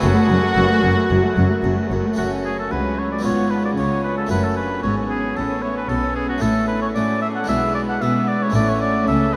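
A clear, up-front solo oboe carries the melody in this dramatic, stormy passage from a baroque-style concerto movement, joined by a very quiet violin section also on the melody, while a second violin section, lush violas and expressive cellos with portamento sit in the background, a dry, close-miked harpsichord supplies plucked accompaniment, and distant, intense double basses hold the bass, set in the long reverb of a vast, echoing space.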